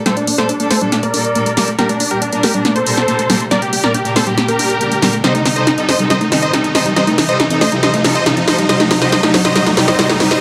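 Euphoric and soaring, this uplifting trance excerpt in G minor runs at 139 BPM in a straight 4/4 and captures a build-up, moving from Gmadd9 to Cm at 5.2 seconds. A huge, bright supersaw lead carries the melody up front, detuned and compressed with a fast attack, passing through a low-pass filter sweep and delay. Beneath it, a very quiet unison pluck adds a second line with a lush, wave-folded, full-bodied tone. A rich symphonic string section holds bowed chords with light vibrato and a biting, intense edge, while a tight, mellow sequenced synth drives arpeggios in the background, colored by chorus, delay and its own filter sweep. A punchy analog drum machine plays a fill of hi-hat and tape-warm snare throughout, an electronic riser enters at 1.8 seconds, and a moderate, lush hall reverb gives the whole build a spacious digital ambience.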